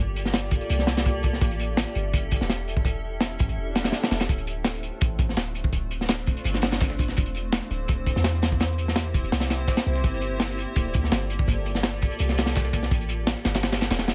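Drum and bass with a jungle edge, raw and dark at 167 BPM in D minor, this excerpt pairs a deep, boomy 808-style bass and a cloudy, evolving granular pad of sustained chords with an up-front crunchy breakbeat kit, gritty and saturated with a punchy kick that drops out from 3.6 to 4.3 seconds as a very quiet electronic swell sounds, before a dusty, tape-toned sampler-style kit with high-passed hats and snare joins in the background at 4.3 seconds over chords moving from Gm9 and A7 through Dm7 and C7.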